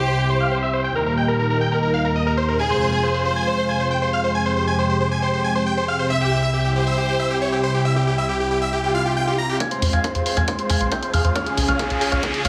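A huge, euphoric supersaw lead carries the melody in this soaring, emotional uplifting trance excerpt, joined from the start by a biting studio violin section with light vibrato on a second line and a lush, airy unison pad holding sustained chords under a filter sweep, with sidechain pumping, tape echo and a huge ambient reverb. The violins drop out at 7.5 s, and a swell leads into a build-up at 9.6 s, where a smooth, vintage-toned concert grand piano takes up a high second line over a dry, punchy electronic kick and analog drum-machine hi-hats and toms. A tight, dark sequencer bass drives forward just after that as a background riser climbs to the end of this cut from a longer piece.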